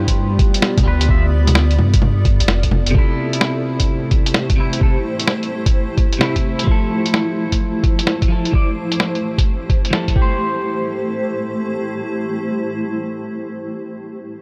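A nocturnal, ghostly future garage excerpt in A minor at 129 BPM with a swung 4/4 feel opens on a cloudy, evolving granular pad, a twangy clean electric guitar with chorus and delay, and a deep, rumbling detuned saw bass that drops out at 2.9 s, while a muffled, thumpy pitched-down kick and a tape-warm lo-fi kit of bongos, filtered hi-hat and snare sit up front until about 10.3 s, leaving the pumping guitar and pad to drift over chords moving from G7 through C6 and Fmaj7 to Am7 in light reverb.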